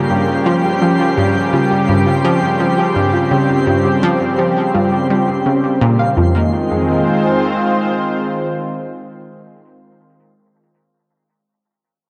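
A lush, warbling unison pad holds chords up front while a soft, mellow pluck arpeggiates in the background and a faint, sparkling granular texture twinkles high above, joined at 0.1 seconds by a low, detuned sawtooth analog pluck riff; the plucks and texture are gone by 6.5 seconds, leaving the thick, chorused pad sustaining alone until 9.8 seconds in a wet spring reverb and echo-heavy mix that gives this fragment of mysterious, hypnotic, sequencer-driven ambient space music its drifting pull.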